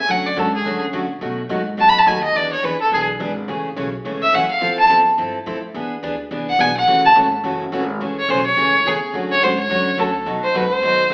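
A clear, focused fiddle carries the melody from the first moment, bowed by a single player with light vibrato and a smooth top, sitting up front for the whole of this brief cut from a longer western swing number. Beneath it, a picked steel-string acoustic guitar enters at 0.1 seconds with a bright, full-bodied dreadnought tone, an occasional finger squeak audible in its playing. An upright bass, plucked on gut strings, supplies a dark, woody, thumpy low end well back in the mix. The swung country feel is playful and down-home, moving through colorful changes such as Dmaj7, B7, E7 and Fmaj7 before the fiddle solo carries on into a fresh pass through the same section at 8.0 seconds. The band sounds like it is playing live in one large studio room with moderate reverb, all filtered through an AM radio sound.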